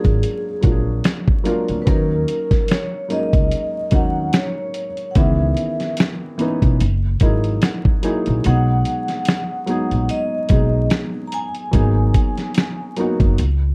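Nostalgic and dreamy, this lo-fi hip hop excerpt sets a ringing vibraphone melody with fast motor vibrato over a soft, felt-muted upright piano with audible action noise, a woody pizzicato upright bass and a gritty, compressed sampler-style drum kit with thumpy kick and fat snare, all wrapped in dark production, light reverb and vinyl crackle, while the piano adds a fill at 6.8 seconds and the kick drops out from 8.4 to 10.1 seconds.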